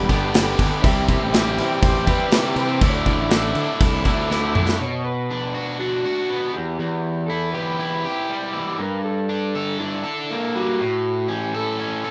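Wistful yet upbeat, this indie rock fragment moves at 120 BPM in a straight 4/4, opening with a punchy, up-front acoustic drum kit, a growly fuzz-driven fingered bass, a bright double-tracked overdriven guitar riff, and a very quiet, flute-like tonewheel organ holding soft chords with chorus vibrato and key click. A dark, slightly broken-up lo-fi guitar melody enters at 0.8 seconds, and after a drum fill the drums, bass and organ drop away by 4.8 seconds, leaving the two guitars over a shift from Bm toward a closing A chord. The rough home-demo mix carries a light reverb.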